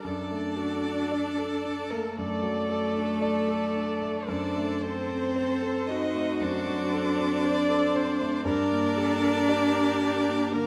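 A solemn, yearning slow movement for piano quintet opens with all five players together at a rubato 57 BPM in 4/4, the first violin singing a smooth, vibrato melody while the focused cello carries an up-front second line and a second violin sits close yet in the background. The viola's even bowed accompaniment blends with an intimate, vintage-toned grand piano whose deep bass and audible action noise stand out. The harmony moves from D/F# to D7/F# and settles on Gm at 8.5 seconds, all within the rich wash of a scoring stage with a 1.7-second reverb tail in this 10.7-second cut from a longer piece.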